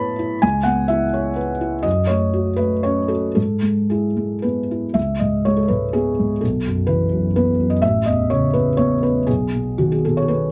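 A felt-muted upright piano plays alone throughout this intimate, reflective neoclassical minimalist excerpt, its dark, mellow tone cushioned by thick felt and set up front with the soft clatter of its action clearly audible. In C# minor and 3/4 time, the rubato pulse drifts between 110 and 131 BPM, with the phrases spanning from A1 to B5. The harmony moves from C#m7 through F#m and E/G#, then shifts at 5.0 seconds into a second passage of C#5, Bsus4, Aadd9 and G#m/B, all captured closely and dry.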